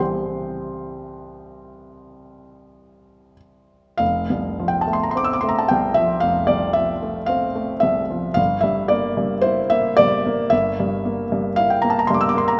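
Serene and nostalgic, this short excerpt of a romantic classical nocturne unfolds with an unhurried rubato feel in common time. A single felt-muted upright piano carries the whole piece, its tone soft and mellow behind thin felt, with short sustain and a close, intimate presence. The audible mechanical noise of the action can be heard alongside the notes, adding to the natural, up-front character of the instrument. The harmony moves from C to F at 4.0 seconds, then shifts to a diminished chord over G at 8.4 seconds, and the playing spans from deep bass notes to the upper treble. A moderate concert hall reverb surrounds the piano, giving its muted sound a gentle sense of space.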